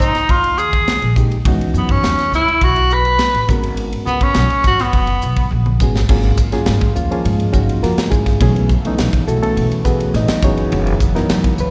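Electric jazz fusion at 104 BPM in a straight 4/4, this driving, nocturnal clip is cut from a longer piece and heard as a live gig through a venue's PA with light recital-hall reverb. A clear tenor saxophone carries the melody up front with vibrato and scooped notes, its jazz-style solo sounding distant and roomy under a slapback echo until it stops at 5.5 s. A woody, thumpy upright bass with gut strings plays pizzicato throughout, while a crisp fusion drum kit with a high-tuned snare and tight kick sounds airy and polished, filling the gap with a drum fill from 5.5 to 6.1 s. A reedy, clean electric piano, heard through its built-in speakers with slapback echo, enters at 1.2 s to comp through minor eleventh chords. At 6.1 s the music settles into G# phrygian over suspended thirteenth chords, and a bold, brassy analog pad with a soft attack, filter swell and chorus joins in the background, its detuned sawtooth tone evolving beneath the band.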